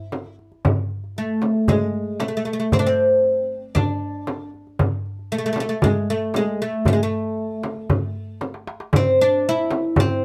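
A woody, fretless oud, plectrum-plucked on double strings and placed up front, opens this longing, melancholic Arabic ensemble piece in A maqam nahawand at 116 BPM in a straight 4/4, joined almost at once by a crisp metal-shell darbuka and a small, bright frame drum played with soft hands, both close and dry, under light reverb, before a drum fill at 8.4 seconds leads into a new section at 8.9 seconds of this fragment cut from a longer performance.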